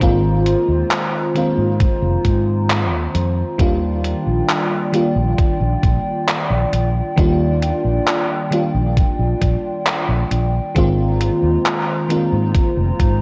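A round, amped fretless electric bass anchors this nostalgic, woozy vaporwave excerpt at 67 BPM in Eb major, moving through Ab69 and Ebmaj9 over a thumpy electronic kick and a detuned 8-bit drum machine of handclaps and hi-hat, both sampler-style and re-recorded in a large room. A lush, dreamy FM electric piano with a soft pad layer sits up front with analog chorus and tape echo, while a dark, wave-folded tape-like pad holds sustained chords above it with chorus, built-in reverb and 12-bit sampler grit. The mix carries light reverb and the worn, warbling pitch drift of old cassette tape, with nothing above 11.0 kHz.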